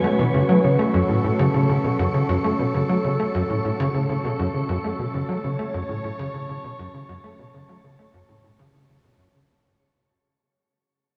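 Mysterious and expansive, this ambient, sequencer-driven space music moves at 100 BPM in 4/4 on an F# minor chord, cut from a longer piece and fading out across its 9.5 seconds. A tight, punchy sawtooth and square-wave sequencer bass drives a plucky riff up front through lush chorus, analog delay and shimmer reverb, while a swirling, detuned analog pad holds sustained chords with a slow attack, colored by phaser, chorus and shimmer reverb. Above them an airy, breathy wind-like noise texture drifts on sine tones, and a huge ambient reverb places the whole in a vast, echoing space.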